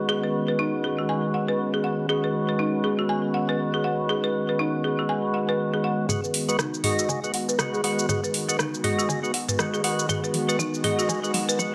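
Swung sixteenths at 120 BPM drive this afro house excerpt in G# minor pentatonic, tuned to A4 = 437 Hz and resting on a G#m7 chord with a warm, driving mood. A smooth sawtooth pad with chorus holds sustained chords beneath fat, lightly overdriven tonewheel organ stabs that turn through a slow rotary speaker with 12-bit grit and delay, while a dark, woody marimba struck with hard mallets plays up-front arpeggios, and all three pump with the sidechain. At 6.1 seconds an afro-pop kit with metallic hats, rim click, shaker and toms enters with a fill alongside a very quiet, deep electronic kick, as a filter sweep on the marimba builds until the cut at 11.7 seconds.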